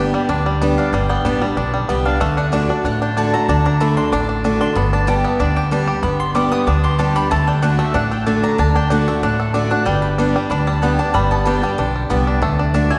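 A lively, virtuosic bluegrass excerpt rings out in a church or concert hall with a wet, lingering reverb. Up front, the twangy, percussive fingerpicked banjo carries the melody over a bright picked archtop guitar and a woody, thumpy gut-string upright bass, moving between G and D chords. From 0.8 s the double-strung mandolin adds picked stabs that make up its solo through this passage.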